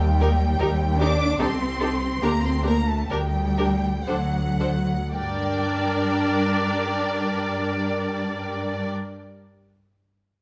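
Classical slow romantic movement for string orchestra in G minor and 3/4, a yearning, solemn fragment cut from a longer piece that moves with rubato at 55-78 BPM and slows through its first 5.2 seconds, as a rich, up-front double bass section and soft-attacked, expressive cellos anchor the low end beneath close, bowed violas, a lush violin melody from 0.2 seconds and a second, higher violin line with a smooth top, all sounding in a wet stone room over chords moving from Eb to Gm/D, D and Gm.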